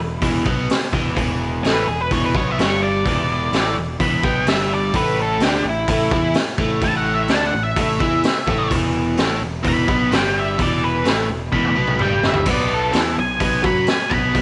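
A straight 127 BPM 4/4 groove drives this swaggering, raunchy blues rock power trio excerpt with a southern rock edge, where a biting, double-tracked overdriven guitar riff and a punchy, fuzz-soaked picked bass run the full 14.4 seconds over a raw garage drum kit with a high-tuned snare, boomy kick and gritty saturation, a dark octave-fuzz lead guitar carries the solo melody from 1.6 seconds, a drum fill lands at 11.5 seconds, and the chords move through E5, A5 and back to E5 before reaching B5, all in a small room with moderate plate reverb and a rolled-off top.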